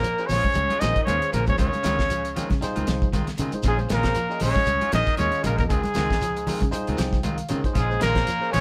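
Defiant and hypnotic, this afrobeat excerpt moves at 117 BPM in Bb dorian with a swung sixteenth feel, as a breathy, whispered trumpet carries the melody up front over quiet second lines from a smooth-topped trombone and a very soft vintage baritone saxophone. A barky, lightly overdriven tine electric piano comps and adds a fill at 6.7 seconds, while two clean picked electric guitars sit in the background, one playing arpeggios and the other stabs. A dry, dark 70s drum kit with a fat snare and tight kick anchors the groove alongside a round, foam-muted fingered bass, with thin-skinned congas and a grainy shekere tucked behind in a moderate live-room ambience.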